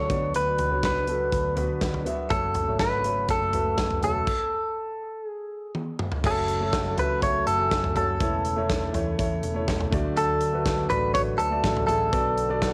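A home cassette recording with light reverb and a touch of studio ambience gives this short cut from a longer piece a soft, lived-in sound. It is uplifting, hopeful piano-driven pop in a straight 4/4 at 122 BPM, moving through Bm and F#m before settling on A/E, D and back to Bm. Up front, a bright, twangy clean electric guitar, recorded direct and compressed, carries the picked melody through a lush chorus, while a warm grand piano fills out the accompaniment beneath it. A principal-stop pipe organ sits in the background with smooth, baroque-voiced sustained chords and a hint of chiff, and a dark, round hollow-body bass anchors the low end. The acoustic studio drum kit is mid-forward with bright cymbals, a medium-tuned snare and a tight kick. A stop arrives at 4.3 seconds, and a drum fill from 5.7 seconds leads into the new section at 6.2 seconds.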